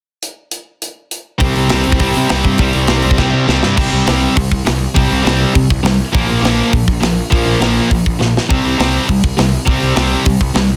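A dry, dense, heavily limited punk rock excerpt, aggressive and raw in straight 4/4, opens with a tight, up-front acoustic metal kit of crash, hi-hat, kick and snare alone until two bright picked electric guitars, one overdriven and one distorted and compressed in the background, enter together with a growly fuzz bass at 1.4 seconds on riffs over C5 and Bb5 power chords, with drum fills at 3.2 and 8.2 seconds.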